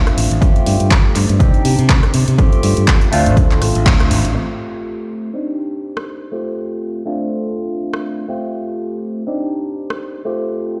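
Played through a big system in a bare room with a large studio reverb, this joyful, feel-good filtered disco house fragment sets a barky, overdriven tine electric piano up front, pumping and phased over suspended and minor add-nine chords, with a growly fingered electric bass and an overdriven, dry electronic kick that both drop out around 4 seconds, after a band accent at 3.9 seconds, leaving the punchy analog drum machine's swung handclaps, hi-hat and rim clicks beneath the piano as a filter sweep runs across it from 4.4 seconds.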